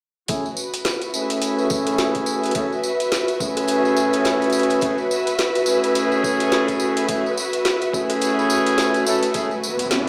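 Heard through a big sound system in a bare stone room, this short glitch hop cut carries a wet, echoing reverb and a gritty, playful mood at 106 BPM in F# minor, with a swung 16th-note feel over a sustained F#m9 chord. Distant, jazz-style horn stabs sit up front with 12-bit sampler grit, dub echo, sidechain pumping and a filter sweep. Beneath them sit a woody snare, metallic hats and rim clicks, a pitched-down, thumpy electronic kick, a jingly tambourine and a soft-attack, bowed string section playing sul tasto with vibrato, all building until an electronic riser enters at 9.5 seconds.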